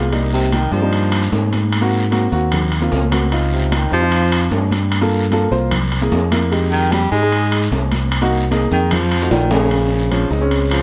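A driving, straight 4/4 groove at 150 BPM in F minor carries this sultry Afro-Cuban jazz excerpt, where a breathy, up-front baritone saxophone with vibrato, subtone and scooped notes solos from 0.3 seconds over a warm baby grand piano and a bright, direct fingered electric bass, while hard-hand congas sit in the background alongside raspy guiro and ringing, distant timbales, a drum fill at 9.3 seconds leading into a Bbm9 chord at 9.7 seconds, all in light reverb.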